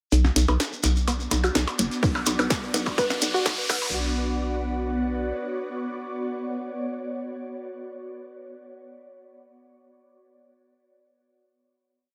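Minimal techno at 126 BPM in B minor, cool and clinical, this short piece is one build-up: a squelchy, resonant blip pluck runs a 16-step sequence under a filter sweep, with phaser, chorus, tape colour and delay. Beneath it sit a hollow, bouncy FM bass riff, a gritty looped breakbeat kit, a grainy shekere, tape-warm percussion blips, an overdriven house kit with cracking snare and crash, and a punchy four-on-the-floor electronic kick entering at 2.0 s. Meanwhile a riser, a very quiet swarming drone and an ethereal, airy pad with chorus and phaser gather toward a final B minor chord at 3.9 s, which the pad sustains until 7.5 s.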